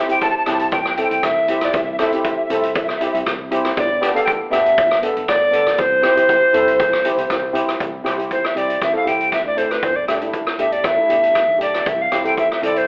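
Carefree and festive, this calypso excerpt moves at 119 BPM in C major, with an up-front, close-miked alto recorder carrying the melody in an airy, woody tone with crisp chiff and vibrato, then taking a solo from 7.8 seconds over chords such as Cadd9 and Gsus2. Mellow, shimmering cello pans played with soft rubber sticks supply a vintage, band-limited accompaniment, while a street-band drum kit with a boomy kick, hi-hat and rim click and a punchy fingered electric bass, tucked in the background, keep the groove. The band sounds as if playing live in one room, bathed in lush large-studio reverb yet filtered to a telephone-like sound.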